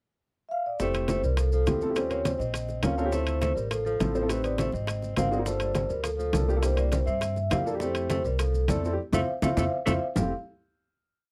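A dry, close recording in a 1970s studio style, with little reverb, frames this short, sunny Afro-Cuban jazz piece in F major, moving at a danceable 205 BPM in a straight 4/4. During a pickup bar, the vibraphone with soft mallets enters at 0.5 seconds, singing a motif-based melody of hook phrases with a metallic ring and a slow motor vibrato, while a mellow tenor saxophone adds a second line in subtone with light vibrato and a soft attack, mostly in thirds. The upright piano, intimate and woody with audible action noise, supplies syncopated chord stabs in rootless voicings, and the pizzicato upright bass sits up front with a thumpy, gut-string tumbao that anticipates the chords. Behind them, congas with slaps and open strokes sound bright yet damped and saturated, bongos keep tight, high-tuned steady eighths with a hand bell, timbales ring out a shell pattern and bell, and grainy maracas shake in a live room. 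The harmony moves from Fmaj7 through Eb13, Dm7 and a chromatic turn to Gm7 and C7 before returning home, and a band accent from 9.0 seconds, joined by a drum fill at 9.4 seconds, leads to a final chord at 10.2 seconds.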